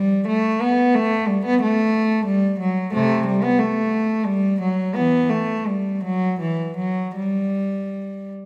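A rich, reedy cello with a gut-string tone plays alone in period style, bowed by a single player and heard close and up front in a wet recital hall reverb. This short cut from a baroque-style suite movement for unaccompanied cello is serene and dance-like, moving in a rubato 6/8 at a slow 51-61 BPM in the dotted quarter, in G major. The cello stays in its low register from C3 to B3 and plays through to 8.3 seconds.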